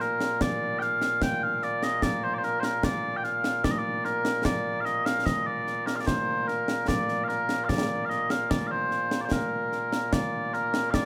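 Scottish traditional pipe music in a straight 2/4 at 74 BPM and in Bb major, this ceremonial, proud excerpt features mellow, sweet small bagpipes carrying a continuous, vibrato-laden solo melody up front from 0.0 to 11.1 seconds, joined throughout by concert snare and bass drums with dark cymbals and a small-room acoustic presence, all captured by close, detailed microphones with light reverb.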